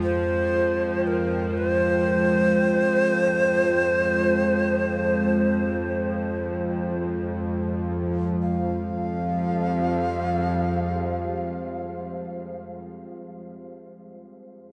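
A breathy, bright shakuhachi carries the melody up front, its bamboo tone reedy with vibrato and a touch of chiff, trailed by a diffuse ambient delay. This dark ambient drone excerpt drifts in free time in F minor, cavernous and unsettling, with a deep, moody pad holding sustained chords through chorus and a string-like, tense bowed drone with vibrato anchoring the low end. A huge reverb with an 8.1-second tail bathes the piece, and the shakuhachi and drone fall away at 12.4 seconds as the pad lingers to 12.9.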